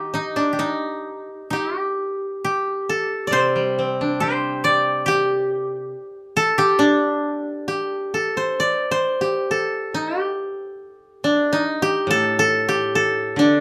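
Close, detailed sound in a moderate studio room frames this calm, austere fragment of Japanese chamber music at 69 BPM in a rubato 2/4, where three kotos played with fingerpicks, dry and woody, share the texture: one carries the melody up front throughout, a second line joins it until 9.2 seconds, and a lower accompaniment drops out at 5.9 seconds before returning at 12.1 seconds.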